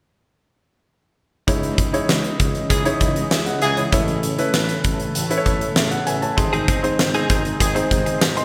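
A straight 4/4 pulse at 98 BPM drives this dramatic, moody piece of 1980s-style pop in C# minor, with a huge arena drum kit up front from 1.5 s, its punchy kick, fat snare and hi-hat ringing in a big room. A concert grand piano carries the accompaniment with an intimate, natural tone, audible action noise and deep bass. In the background, a sweeping, full-bodied pad of detuned sawtooth and triangle layers with ring modulation, a resonant filter swell and chorus sustains chords. A mellow tuba with vibrato and a smooth top holds down the bass. A horn section adds brief ensemble stabs with light vibrato at 2.7 s and again at 7.6 s, and a clean, compressed electric guitar, picked and recorded direct with subtle chorus and delay, enters with a riff at 6.4 s as the harmony moves from C#madd9 to A to G# under moderate plate reverb and bright digital production.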